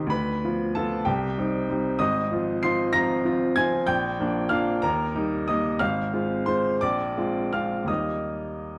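A clear, natural-sounding baby grand piano sits up front with long sustain, playing solo across a range from Ab1 to C7 in this hopeful, lyrical romantic character piece in Eb major. Moving in a flexible rubato 6/8 at roughly 54-64 BPM counted in dotted quarters, the harmony passes through C minor, F minor and Bb before settling on Eb at 4.8 seconds, then returns through a Bb9 to close on Eb near 7.9 seconds. A recital-hall reverb with a 1.4-second tail wraps this short fragment in a dark, warm production.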